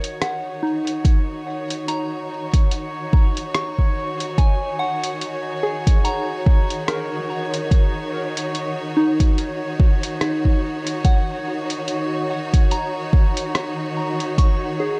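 A deep, layered electronic kick sits up front from 1.0 s, anchoring this spacious, hazy ambient dub fragment in Eb minor at 72 BPM with a 16th-note swing, beside a muffled, pitched-down sampler-style kit of hi-hat and rim click soaked in dub echo. A lush, bright bowed string section fades in on a sustained Ebm7 chord with vibrato, while a soft FM synth bell plays pure, decaying arpeggios through chorus, phaser and tape echo. Throughout, a calm glassy texture of drifting sine overtones holds a long Db5 in reverb, giving the dark, digital production its dreamy haze.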